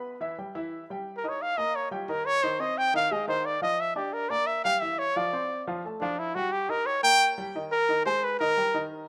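Sunny and lively, this short jazz excerpt opens with an intimate baby grand piano, warm and natural with audible action noise and a short sustain, comping through shifting harmonies such as Em, Eb, Ab6 and Edim7. At 1.2 seconds a clear trumpet enters up front and carries the melody as a solo, its soft attack and vibrato giving the line a jazz style. A light small-room reverb frames the rough home-demo mix.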